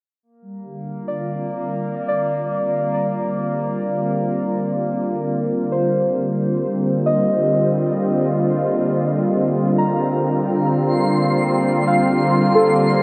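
Bathed in a huge, wet reverb with a long, nearly eight-second tail, this weightless, luminous ambient fragment, cut from a longer piece, drifts in free time. A warm analog pad sits up front from 0.4 seconds, its smooth, detuned sawtooth chords swelling in slowly and sustaining through a gentle chorus. Beneath it, an evolving analog drone blends sawtooth, pulse and sine tones with wave-folded colour and pulse-width modulation, holding a low note while it fades out. Muted, felt-like synth keys play soft, intimate arpeggios with a quick attack and a dark, decaying tone, carried by chorus and tape echo. The harmony moves from Bb to Ebmaj7 at 5.3 seconds and on to F, and at 10.9 seconds a twinkling granular texture appears high above, sparkling with an octave-up FM shimmer and its own reverb.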